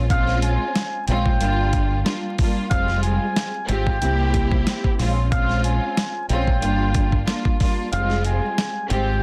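Vinyl crackle and light reverb sit over a dense, heavily limited master in this reflective, moody boom-bap hip-hop excerpt at 92 BPM in F harmonic minor, with a lightly swung 16th-note feel. A gritty, compressed sampler-style drum kit, with a thumpy kick, medium-tuned snare and hi-hat, sits up front beside a round, dark fingered electric bass. A lush, woody string section, bowed sul tasto with vibrato, carries the chords through a cassette-tape haze, while a cup-muted trumpet plays a soft, breathy, veiled jazz melody touched with tape echo, and the kick drops out at 7.9 s.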